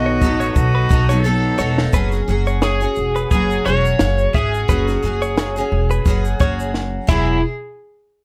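Easy-going and carefree, this short piece cut from a longer acoustic pop track moves at a relaxed 87 BPM in 4/4 with a light swing on the sixteenths. A bright, overdriven slide guitar played with fingerpicks carries the melody throughout, while a double-tracked, picked steel-string acoustic guitar with an auditorium body fills in the accompaniment. Underneath, a woody, thumpy upright bass with gut strings sits up front, and a compact cocktail drum kit with a high-tuned snare, punchy kick, shaker and crash enters at 0.2 seconds, its small-room sound dark and rolled off at the top. A clean, compressed electric guitar recorded direct adds quiet picked arpeggios from 0.1 seconds, and a single bowed cello, intimate and airy with light vibrato and a soft sul tasto attack, plays a second line at the opening and returns at 7.1 seconds. Drum fills mark the move from a B7 opening to an F#sus2 passage at 1.9 seconds and the close on Eadd9, all in a dry mix with little reverb.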